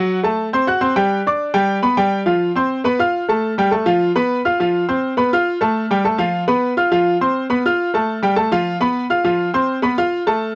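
Latin piano music at a brisk 206 BPM in 4/4, festive and danceable, heard in a short excerpt cut from a longer piece. A bright, woody upright piano plays alone from 0.0 to 10.5 seconds, spanning F3 to F#6 with a polished, up-front presence and long sustain. It opens on F#dim and G, then from 2.3 seconds cycles through F5, F and Fadd9 with brief unharmonized breaks, all captured in a dry, close 1970s-style studio sound.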